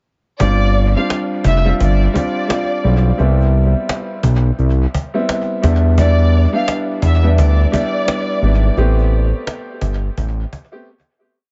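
Dark and gritty, this short boom-bap hip-hop piece rolls at 86 BPM with a swung feel, a deep, saturated synth bass sitting up front with slides and chromatic approach notes under chopped, woody upright piano chords looped like a sample through cassette-tape colour and dub echo. A lush, bowed violin section with vibrato repeats a short looping melody over chords moving from G7sus4 through Cmaj7 and Em7 to Am9, while a snappy cajon keeps a sparse beat with quarter-note hats and a clap-layered snare. The echo-heavy, dry mix is dark at the top end, and the piece fades out from 8.8 s before a brief break at 10.9 s.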